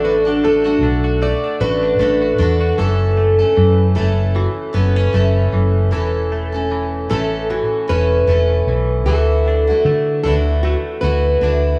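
Heartfelt and sunny, this fragment of a longer pop piece in D major drifts at 76 BPM with a light sixteenth-note swing: a full-bodied fingerpicked jumbo acoustic guitar carries the melody through subtle chorus and tape echo over a picked acoustic guitar's warm backing, a bright, twangy clean electric guitar weaving chorused arpeggios, and a dark, round hollow-body bass sitting up front, while a worn, woody, faintly detuned upright piano murmurs very quietly only until 2.8 s, all washed in a dreamy plate reverb.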